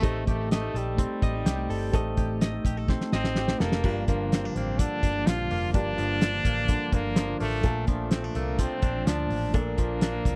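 Jangly indie pop in G minor at 126 BPM, restless and wistful, with a nasal, metallic stopped French horn carrying the melody over a thuddy, cloth-damped drum kit with a fat snare and dark cymbals, a round, foam-muted picked bass and a twangy, direct-recorded clean guitar playing arpeggios. A dark, fingered electric guitar with harmonic tremolo sits in the background beside a very quiet, woody upright piano with audible action noise, as the chords move from Am7b5 to Gm7 at 3.8 seconds and Bbmaj7 at 7.6 seconds. A drum fill arrives at 2.9 seconds, and the whole short cut from a longer piece has a dry, close, 1970s-style studio sound with little reverb.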